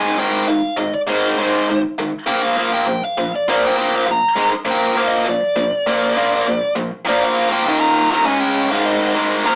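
A tight, bright rhythm guitar drives this upbeat, rebellious punk clip, its distorted, double-tracked riff picked and sitting up front from start to finish. Beneath it, a dark, smooth overdriven lead guitar picks out a melody across the full 9.6 seconds, and a second section arrives at 7.1 seconds with quicker chord changes. The sound is rough and rehearsal-room raw, with a wet studio reverb, warm saturation and the boxy character of a small speaker.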